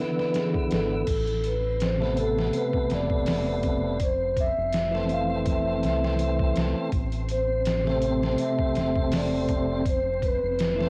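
Brooding and cinematic, this trip hop excerpt moves at 82 BPM in A minor with a light sixteenth-note swing, opening on an E7 chord before settling into a cycle of Amadd9, Fmaj7 and Am. A mellow soft-mallet vibraphone carries the melody with a ringing, metallic tone roughened by 12-bit sampler grit and cassette tape, while an up-front, lightly overdriven tonewheel organ with key click, fast rotary speaker, harmonic tremolo and tape echo fills the accompaniment, and a flickering, granular detuned texture hovers in the background. The compressed, pitched-down, gritty sampler drum kit arrives at 0.2 seconds with a thumpy kick and medium-tuned snare, and a round, deep analog bass joins at 0.7 seconds, all within a lightly reverberant home-cassette sound dusted with vinyl crackle.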